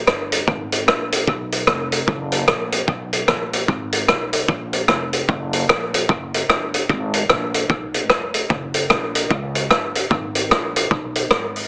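Heavily compressed and pinched through a small-speaker radio sound with light reverb, this short ska fragment, cut from a longer piece, feels driving and mischievous, carried by a swung eighth-note feel in 4/4. A vintage drum kit sits up front and well above the bass, its hi-hat, tight kick and rim click sounding gritty and saturated, with a rolled-off top and a dub echo trailing behind. Underneath, an upright bass plucked pizzicato on steel strings gives a woody, thumpy low end that stays dark and low in the mix. Both parts enter together at 0.1 seconds; the drums run to 11.6 seconds and the bass carries on to the end at 11.7 seconds, forming a single stretch of groove. The effect is a lean, rough-edged rhythm bed with the drums' echo adding a playful dub shading.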